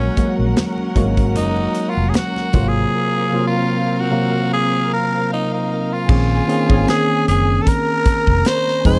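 Lush 1970s-style soul with a cinematic, bittersweet mood, this short cut from a longer piece moves at an unhurried pace with a gentle swing. A raspy, gritty tenor saxophone carries the melody up front as a solo through the first 6.1 seconds, its bright pop-style tone colored by vibrato. Beneath it, a worn, slightly out-of-tune tine electric piano plays the accompaniment, lightly overdriven through a combo amp, while a studio string section adds a bowed second line, played sul tasto with an intimate, smooth top. A vintage foam-muted fingered electric bass supplies a dark, round low end, and a polished acoustic drum kit with a punchy kick and medium-tuned snare enters at 0.2 seconds alongside very quiet, low-tuned congas that fall away at 2.7 seconds. The harmony drifts from Gbadd9 to Ab13 before settling on Bbm11 as a new section begins at 6.1 seconds, all captured in a dry, close 1970s-style studio sound.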